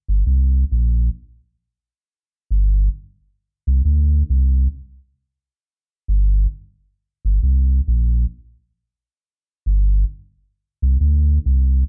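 Spacious and meditative, this brief reggae fragment, cut from a longer piece, rests on a single part: a sub bass playing alone from 0.1 to 11.8 seconds. Its tone is deep and round, close to a pure sine, with a fast attack and sustained, mellow notes that sit up front in the mix. The line stays low, moving between G1 and D2, and the sixteenth-note swing gives the unhurried groove a loose, rolling lilt. A light reverb lends the bass a touch of air, while the overall sound is dry and close, recalling a 1970s studio. The whole passage unfolds as one continuous section, leaving plenty of space around the bass.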